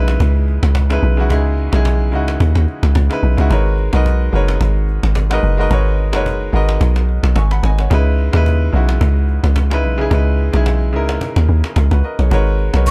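A deep, round log drum bass sits up front in this late-night, hypnotic amapiano groove, its dark, percussive tones striking fast and decaying over a noise layer, while a clear baby grand piano supplies short-sustained, natural-sounding chords beneath it. A woody cajon with faint snares adds quiet acoustic texture in a small room, and the swung sixteenth-note feel carries the dry, gritty studio sound along. Just as this cut from a longer piece ends at 12.9 seconds, a breathy jazz flute enters up front on a single high, expressive note with vibrato and lifted highs.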